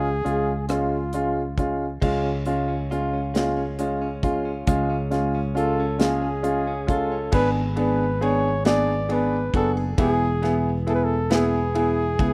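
A slow six-eight pulse at 45 BPM, counted in dotted quarters and played straight, carries this melancholic, dramatic pop ballad, cut from a longer piece. A close-miked flugelhorn sings the melody in a jazz style, with light vibrato, scooped notes and a tape echo trailing its lines. Underneath, an open baby grand piano with long sustain sits up front in the accompaniment, joined by a growly, amped fretless bass with a subtle chorus, and a modern studio drum kit comes in at 0.3 seconds with a punchy kick, medium-tuned snare, rim clicks, hi-hat, ride and crash under a rolled-off top. At 2.0 seconds a clean, direct-recorded electric guitar adds compressed, picked arpeggios with tape echo, tucked in the background. The harmony moves from C# to G#dim at 7.3 seconds and settles on E at 10.0 seconds, all captured in a small room with the rough feel of a home demo mix.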